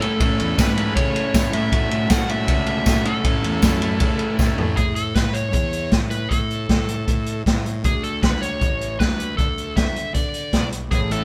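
An up-front vintage drum kit drives this upbeat, carefree indie rock excerpt, with a punchy kick, a medium-tuned snare and dark cymbals, while the kit's rolled-off top keeps the natural studio-room sound mellow. Over it, a nasal lead guitar with a parked wah carries the melody throughout, its overdriven tone sitting in a fairly high register. In the opening section, a bright, crunchy overdriven guitar and a thick, distorted fuzz guitar in the background play the riff over Amaj7, F#m7/A and A6 chords, while a jingly, close tambourine adds sparkle from behind. A round, fuzzy fingered bass enters a moment after the start and underpins everything. After a drum fill at 4.4 seconds, the riff guitars drop out at 4.8 seconds into a chordless passage where the lead, bass and drums carry on, and the crunchy guitar returns at 10.9 seconds just before the cut. Light reverb gives the feel of a band playing live together in one room.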